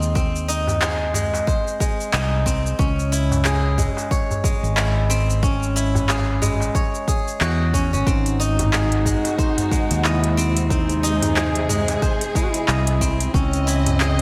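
A bright, silvery steel-string zither sits up front, ringing out fingerpicked arpeggios through delay and slapback echo in this meditative, hypnotic organic downtempo excerpt. Beneath it, a round, dark fretless electric bass carries the low end with tube saturation and sidechain pumping, while a deep, tape-toned electronic kick and an overdriven organic electronic kit of handclaps, smooth hi-hat and shaker set a gently swung groove. A large clay-shelled darbuka, struck with hard hands, sits distant in the background of its own big room. At 8.1 seconds a mellow, folk-style solo duduk enters with vibrato, dressed in delay and slapback echo, alongside a lush, bowed symphonic string section holding sustained chords with sidechain pumping. The harmony moves from G# to C#m, then to G#7 before settling on C#madd9, all wrapped in a lush hall reverb that gives the mix a big arena sound.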